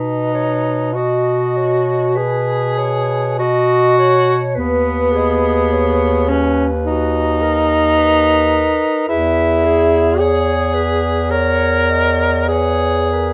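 A lyrical, elegiac classical passage for single-reed quartet opens with all four voices together in a slow, rubato 4/4. The clarinet carries a smooth, warm melody beside the close-miked alto saxophone's second line, both set back in the balance, while the tenor saxophone's vibrato-tinged, roomy accompaniment and the bass clarinet's clear low line sit up front. Light reverb surrounds this melancholic excerpt from a longer piece as its harmony shifts at 4.6 and 9.1 seconds.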